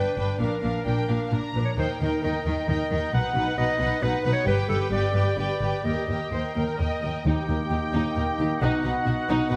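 A bright solo clarinet carries a prominent second line in this soaring, triumphant cinematic passage, cut from a longer piece and moving at 132 BPM in a straight 3/4. Above it, a lush violin section sings the melody with smooth vibrato, while a second, more focused violin section and a rich viola section fill in the middle with bowed ensemble sound. Underneath, a dark, woody double bass section and a cello section set further back hold the bass, the cellos joining at 0.2 seconds. The harmony moves through Bb, Eb, B, G and Eb before settling on B. At 7.3 seconds the orchestra broadens: a distant, mellow cor anglais adds another line, a clear French horn section sustains chords in the background, a punchy trumpet adds stabs, and a brief timpani stroke with calf heads marks the arrival. A moderate scoring-stage reverb gives the ensemble a spacious glow.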